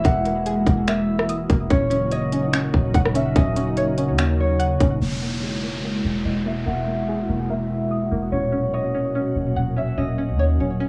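A half-time 4/4 trap beat at 145 BPM, with a hard-clipped kick, crisp hats, finger snaps and rim clicks, drives this floating, dreamy cloud-rap excerpt in E lydian until 4.9 seconds, while a glassy, ethereal FM pad pumps up front beneath a ringing fingerpicked concert harp melody, twangy string-like resonator pluck arpeggios with tape echo and a deep, round 808-style bass, before a downlifter and reverse cymbal arrive with a filter sweep at 5.0 seconds, all within a small-room home cassette recording.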